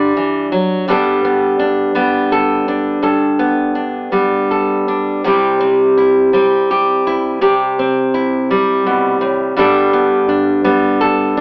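Folk music for solo fingerstyle acoustic guitar, this short excerpt is peaceful and nostalgic, moving in a gentle 3/4 at 83 BPM with a rubato feel in G major. A single nylon-string guitar plays throughout the 11.4 seconds, fingerpicked in a classical manner and ranging from G2 to A4. Its tone is warm and full-bodied, with the freshness of new strings, and it sits up front, where finger squeaks on the strings can be heard. The harmony opens on Dsus4, settles onto Gadd9 at 0.9 seconds, moves to C at 5.2 seconds, and returns to Gadd9 at 9.6 seconds. A moderate studio reverb surrounds the guitar, the playing has a live, in-the-room quality, and the overall sound carries the narrow, vintage colour of an AM radio, heightening the wistful mood.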